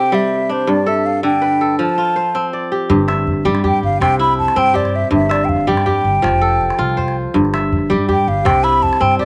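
The kora stands out most, bright, crisp and up front, its fingerpicked arpeggios ringing across a span from G2 to E5 with a slapback echo trailing each note. This is West African traditional string and xylophone music in G mixolydian, moving at 108 BPM in a straight 12/8 with a hypnotic, joyful mood. An airy concert flute carries the melody between C5 and B5 from the start, its soft attack, vibrato and hollow, mellow tone sitting beside the kora. At 2.9 seconds an upright bass joins with woody, growly pizzicato on steel strings, and a small calabash plays along in the background with a live-room sound. The harmony cycles through C, G, F and Em/G under light reverb in an outdoor setting, and the passage is cut from a longer piece, ending at 9.2 seconds.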